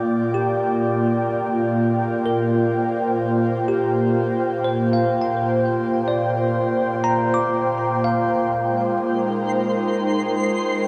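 Ambient piece in 3/4 at 63 BPM, melancholic and reflective, where an airy, breathy pad with chorus holds sustained chords up front throughout while a bell-like tine electric piano plays arpeggios through tape echo until 9.0 s, a twinkling granular texture with octave-up shimmer enters at 9.2 s, and the harmony moves from Gm7/Bb to Abmaj7 at 8.5 s, all within a dark production and a huge reverb of 8.9 seconds, cut from a longer piece.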